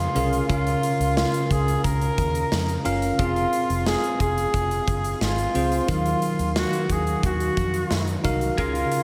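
This glossy, uplifting 1980s-style pop excerpt at 89 BPM in 4/4 opens with a warm flugelhorn carrying the melody up front, its vibrato-laden, distant and roomy tone trailing shimmer reverb and analog delay. Beneath it, a bell-like tine electric piano plays bright, clean, direct accompaniment with its own shimmer, while a vintage muted fingered electric bass lays down a dark, round, foam-muted line with an amped edge. A big rock drum kit joins at 0.2 seconds, with a punchy kick, a medium-tuned snare and hi-hat ringing in a large acoustic room. The harmony moves from Bbm/Db to Fm and then to Ebmadd9, giving the phrase a hopeful lift. At 8.6 seconds a compressed, twangy twelve-string electric guitar slips in with a picked riff, sitting in the background under lush chorus, shimmer reverb and analog delay. A long plate reverb soaks the whole mix in a dreamy haze.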